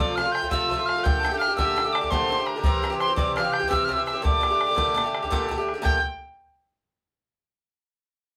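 An airy, close-miked metal tin whistle with a crisp, chiffy attack and vibrato carries the melody of this driving, wild Celtic slip jig in G dorian at 112 BPM in 9/8. A reedy, distant gut-string fiddle plays the second line, and a metallic, up-front Irish bouzouki picks double strings through F, Gmadd9 and C. An open, boomy bodhran joins at 0.2 seconds, with the band playing live together in one room under a wet studio reverb.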